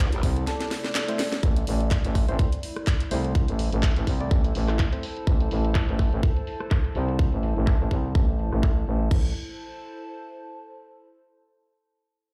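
This aggressive, swaggering bass house excerpt opens on dark, con sordino strings holding sustained chords in the background, soon joined by a warbling, nostalgic lo-fi pad with chorus and phaser and a brief, very quiet round synth lead, as a drum fill and break run beneath the drop. A growling, thick FM bass sits up front with sidechain pumping, driven by a tight layered kick and a garage kit with a cracking snare and low-pass-filtered hats, while filter sweeps move across the drums and bass from 1.4 seconds and a hollow, nasal organ stab with delay plays until 5.1 seconds. The pad lingers alone to 11.0 seconds, the mix carried by a large studio reverb as if played on a big sound system in a bare room.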